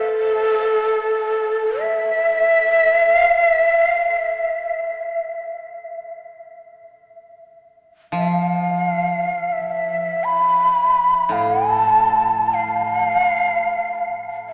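Unmeasured and free in time, this short piece of Japanese traditional chamber music carries a still and solitary mood. A shakuhachi carries the melody from the outset, its breathy, hollow bamboo tone sitting up front with a crisp, chiffy attack, vibrato and lifted highs as it ranges from A4 up to B5. At 8.1 seconds a koto enters in the low register beneath it, plucked with fingerpicks and giving a dry, woody accompaniment that sits well back in the balance until 14.0 seconds. A long, wet cathedral reverb surrounds the performance and lets notes hang in a vast space. The recording is cut from a longer piece, opening and closing partway through its single section.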